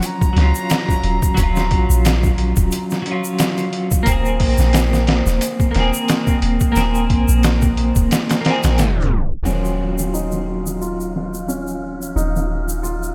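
A breathy silver flute on Bb5 opens this hypnotic, cinematic trip hop excerpt in Eb dorian at 89 BPM, over a bright, twangy twelve-string electric guitar with tremolo and tape echo, gritty, overdriven sampler drums with a thumpy kick, a close, dry egg shaker and a deep, round 808-style bass; after a tape stop, a muted felt upright piano with audible action noise enters at 9.5 seconds as filter sweeps move over it and the guitar, and an airy, wind-like tuned noise texture joins at 10.4 seconds, all inside a dreamy mix soaked in cathedral reverb.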